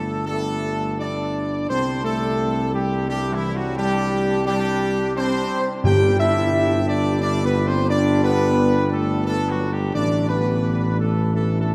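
A clear trumpet section carries the melody up front, singing with a light vibrato and tight, classical poise over a solemn yet triumphant brass chorale in G major, moving at 87 BPM in a stately 3/4. Beneath it, a dark French horn section holds sustained chords with a smooth top, while a warm, vintage-toned trombone section adds tight sustained harmony from the background. A dark tuba, close-miked and up front, anchors the low end with a firm bass line. Timpani with medium mallets on calf heads enters briefly at 5.8 seconds, sounding close and dry behind the brass. The chords drift through open suspended harmonies, settling on a bare G5 before a Dsus2 over A near the end. A wet cathedral reverb with a long decay surrounds the ensemble in a dark, warm production, and the recording is cut from a longer piece.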